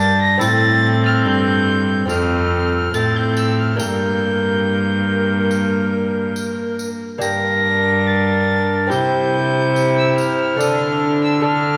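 A long, wet cathedral reverb surrounds this solemn, courtly Renaissance-style consort dance, heard at 71 BPM in G dorian. A distant, reedy gut-string violin carries the high melody over a hollow, airy, close-miked tenor recorder with audible chiff on the second line, while a nasal viola and a delicate, fingerpicked lute with double strings fill in over a rich, up-front cello bass with light vibrato. A jingly, bright tambourine sits in the background from 0.4 to 11.0 seconds as the harmony moves from Am through F and Gm to C and Dm.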